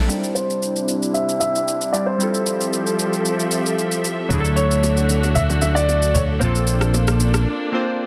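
A punchy, up-front fingered electric bass arrives at 4.3 s with very quiet congas and bongos in this soulful amapiano excerpt at 114 BPM in C major, where a dark, boxy grand piano melody with digital delay floats over chorused, detuned analog keys carrying a filter sweep, lush bowed strings holding Cadd9, Fmaj9, Dmaj9 and Bbmaj9, and an overdriven electronic shaker and rim click, set in light reverb before a brief break at 7.5 s.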